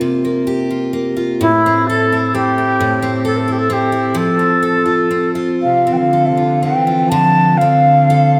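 Bathed in a wet church reverb, this mournful, haunting Celtic slow air in 6/8 drifts in rubato at around 39-44 BPM, opening with a bright, full-bodied picked steel-string acoustic guitar on a C7sus4 before a pure, woody, unsteady baroque flute with vibrato enters at 1.4 seconds over Am and F, and an intimate, airy-bowed cello played sul tasto joins at 5.6 seconds before the harmony turns to Dm7 at 7.1 seconds in a brief cut from a longer piece.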